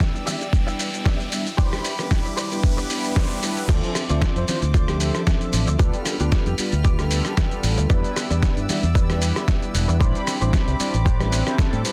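Nu-disco with a sensual, groovy, lightly swung feel, this excerpt opens on a build-up of an electronic riser and a filter sweep on an analog polysynth before the drop at 3.7 seconds, driven by an up-front, thumpy overdriven kick, a gritty sampler-style soul kit of snare, hi-hat, rim click, shaker and crash, and a bright envelope-filtered fingered bass, while a twangy clean picked guitar riff with chorus and slapback echo, pumping detuned sawtooth synth brass with a cassette-tape tint, and floating bowed strings in the background fill the harmony, a soft, round octave-layered synth lead with analog delay sings briefly from 4.4 to 6.7 seconds, and the mix is dry, dense and heavily limited.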